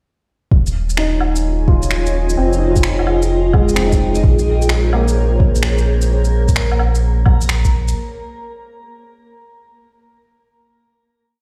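Future garage at 129 BPM in Bb dorian, ghostly and wistful, built on a muffled two-step kick, a skittering shuffled beat of shaker, snaps and low woodblock with a 66% swing, and a deep, round sub bass with tube saturation holding the roots through Eb9sus4, Fm9 and Bbm9. A cloudy, blurred granular pad and a felt-muted upright piano scattering soft, intimate notes through 12-bit sampler grit and tape echo both pump against the kick, while a reversed, dreamy swelling texture rises into a held high note at 5.2 seconds. The whole piece sounds as if played on a big sound system in a bare stone room, lending the groove a light, stony reverb.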